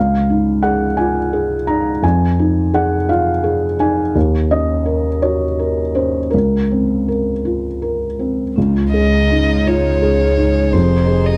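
A soft, mellow felt-muted upright piano opens this intimate, tender neoclassical excerpt in a rubato 6/8 alone until 8.6 seconds, when a bowed double bass, a background chamber string section, and a very quiet, dry vibraphone played with soft mallets join in, followed at 8.9 seconds by an up-front violin melody with an airy, rich tone and plate reverb, all set in a dark production.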